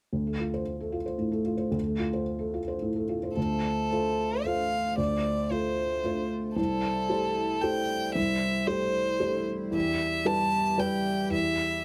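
Neoclassical piano and strings in a longing, reflective mood, moving in a rubato 3/4 at 113 BPM in D dorian, cut from a longer piece. A felt-muted upright piano opens alone at 0.1 seconds, soft and intimate with audible action noise, before a clear, focused solo violin with vibrato takes the melody at 3.4 seconds, joined by a reedy, breathing pedal harmonium holding chords in the background. The close, detailed recording carries little reverb, keeping the piano and violin up front as the harmony passes from Dm7 through Am7/C to Em.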